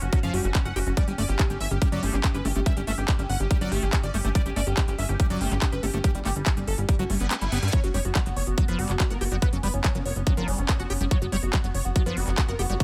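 A straight 4/4 psychedelic trance groove at 142 BPM drives this intense, alien excerpt, with a punchy, up-front electronic kick anchoring a crisp big-room kit of handclaps and hi-hats, and a plucky, wave-folded analog bass underneath. A thick, detuned unison lead carries the melody through phaser and digital delay, while a squelchy, resonant acid bass riff with dub echo and a pulsing, tempo-synced gated chord texture in the background both pump with sidechain compression. At 7.1 seconds a reverse cymbal sounds, and the kick drops out briefly around a drum fill, and from 9.1 seconds a very quiet formant-sweep wobble bass adds a second line in a dry, close mix.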